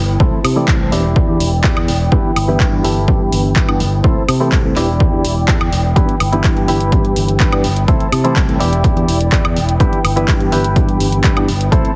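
Heavily compressed, with a radio-like sound and light reverb, this joyful, funky filtered disco house excerpt at 125 BPM in G major sits under a filter sweep across its full 12 seconds as it cycles through C6, Em7 and G6. A punchy, up-front electronic kick and a layered, tape-warm house kit of handclaps, hi-hat and woodblock drive the straight 4/4 groove beneath a bright fingered electric bass. A bell-like tine electric piano with phaser provides accompaniment, a twangy, clean direct-recorded guitar plays a riff, and veiled, muted strings hold dark sustained chords, with sidechain pumping on the strings, bass, piano, guitar and the kit's cymbals, hats and percussion.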